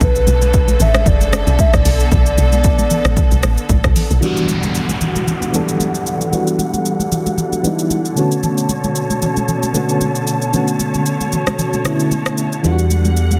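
A late-night, hypnotic amapiano cut, taken from a longer piece, rides a lightly swung groove. It opens on a drop, with a hollow, woody clarinet-like synth lead carrying the melody for the first 3.7 seconds through chorus and tape echo, while a deep, round log drum bass thumps underneath and bowed studio strings hold sustained chords with a pumping, filtered pulse. A punchy, up-front deep house kit of kick, hi-hat, rim click and shaker runs throughout alongside bright, damped congas set back in the background. At 4.2 seconds the log drum drops out and a warbling vintage FM electric piano takes over the accompaniment, its tremolo and phaser adding a mellow shimmer as a filter sweep and a downlifter move through the passage. The harmony shifts between Bm9 and Em9, and a thick, saturated sine sub bass lands on E2 at 12.6 seconds. The mix is dry, dense and heavily limited, with a modern master.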